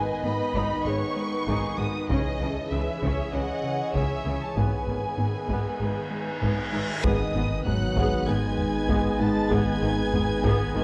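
Heard through worn, warbling old tape with a warbly pitch drift and a moderate scoring-stage reverb, this fragment of a hybrid orchestral and electronic film score in G# minor feels futuristic and vast at 97 BPM in a straight 4/4. A lush violin section carries the melody high above a second, smoother violin line. A focused viola section supplies accompaniment, and a very quiet cello section and a distant double bass section hold the bowed low end. An airy, breathy pad with chorus and a background French horn section sustain the chords, which move from G#m to C#m and back. A very quiet, dusty lo-fi pluck plays arpeggios while a round analog bass works a deep riff and a background taiko ensemble enters at 0.6 seconds with heavy sticks. A reverse cymbal rises from 5.5 seconds into an electronic impact at 7.0 seconds, where a dark, rumbling detuned saw bass arrives on G#1.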